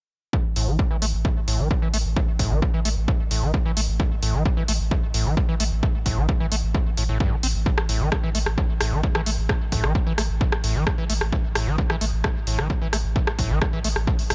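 A squelchy, gritty acid bass riff built on a resonant square wave leads this hypnotic, intense stretch of driving peak-time techno, distorted and thickened with analog chorus, delay and sidechain pumping, its filter sweeping as the notes move between G2 and C4. Beneath it, a punchy, layered electronic kick sits up front with a tape-warm body from being re-recorded in a small room, starting at 0.3 seconds. A deep, thick sub bass holds A1 with a saturated triangle tone, filtered low and pumping with the sidechain from 0.4 seconds. From 0.6 seconds an analog drum machine adds up-front hi-hats and rim clicks, the hats also pumping with the sidechain. The mix is dry and close, riding a straight 4/4 groove over an A5 chord in this fragment cut from a longer piece.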